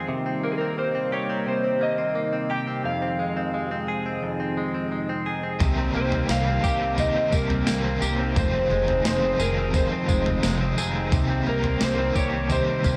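A slightly broken-up electric slide guitar with delay and slapback echo carries the melody from 0.4 s in this haunting, ethereal dream pop piece at 87 BPM, floating over a smooth, dark analog pad and a bright, twangy clean electric guitar picking chorused, echoing arpeggios on Cm7 and Fm7, until at 5.6 s a crunchy overdriven guitar with tremolo, a woody pizzicato upright bass and a crisp 8-bit drum machine with thumpy kick, snare, tambourine and toms join, all set in a lush hall reverb that gives a big arena sound.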